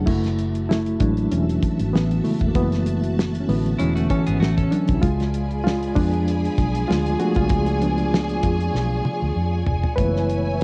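A swung 16th-note groove at 97 BPM in 4/4 carries this bittersweet, cinematic 1970s-style soul passage in F# minor, where a reedy, lightly overdriven electric piano with fast tremolo solos up front over a fat-snared, tight-kicked drum kit and a round, foam-muted fingered bass, while a sawtooth string machine with ensemble chorus holds sustained chords beneath; a twangy, clean guitar riff slips in at 3.8 s, lush bowed studio strings re-enter at 5.0 s as the harmony moves from F#m7 to C#7b9, and a drum fill arrives at 8.7 s, all within a dry home cassette recording.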